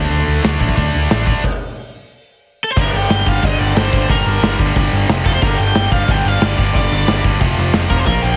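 Urgent, raw punk rock at 181 BPM in G minor, cut from a longer piece, where a tight, double-tracked distorted guitar riff and a growly, overdriven picked bass drive over a loose indie drum kit with dark cymbals and a punchy kick in a pumping room, hit a stop at 1.4 seconds, then return at 2.8 seconds, just after a cranked stack guitar enters at 2.6 seconds with an overdriven, tape-echoed melody, all in a dry, heavily compressed radio sound.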